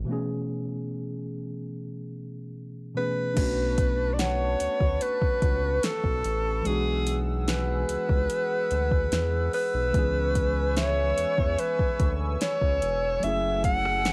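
A breathy, close-miked alto saxophone carries the melody from 3.0 seconds, with vibrato, scooped notes and a whispered, intimate jazz tone that sounds as if dubbed through cassette tape. This is a sensual, moody piece of contemporary R&B in B dorian at 73 BPM, cut from a longer piece, opening with a break in which a worn, slightly out-of-tune tine electric piano and a round, deep analog bass with a dark, ring-modulated edge lay the groundwork. At 3.4 seconds a smooth, electronic drum kit arrives up front with a soft kick, fat snare, metallic hats, rim clicks and crash, re-recorded in a large room and given the same cassette coloring, while a shimmering, retro pulse-width pad with chorus and a slow attack holds sustained chords underneath. Between 4.2 and 12.6 seconds a delicate, bell-like celesta rings in the background through tape echo. The harmony moves from Amaj9/B through Bm9, E9/B and C#m7 to F#m9, all under light reverb with the intimate feel of a home recording on cassette.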